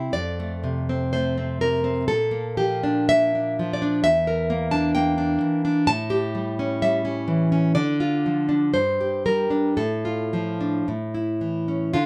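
A lone nylon-string guitar opens the music on an F chord, setting a passionate, melancholic tone for this excerpt of a romantic piece for solo classical guitar. The tempo moves freely between 55 and 67 BPM in a rubato 2/4, giving the phrase an unhurried, expressive pull. Fingerpicked across a range from E2 up to A5, the guitar sounds warm and up front, with finger squeak adding an intimate, human touch. The harmony passes through Bb, Em7b5 and A7, then settles into Dm and Gm before Dm/A gives way to a closing A chord at 10.9 seconds. Moderate studio reverb lends a modest sense of space around the instrument, and the excerpt ends at 12.1 seconds, cut from a longer piece.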